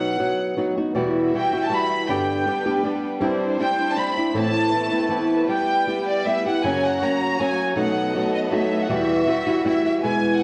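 A floating, pure-toned studio violin section carries the melody up front in this romantic, proud mariachi excerpt in E minor at 159 BPM in 3/4, over a fresh-stringed, fingerpicked flamenco guitar accompaniment, while a rich chamber violin section with focused vibrato holds sustained chords in the background from 1.0 to 10.0 seconds, the recording set in wet recital hall reverb and the warbling pitch drift of worn cassette tape.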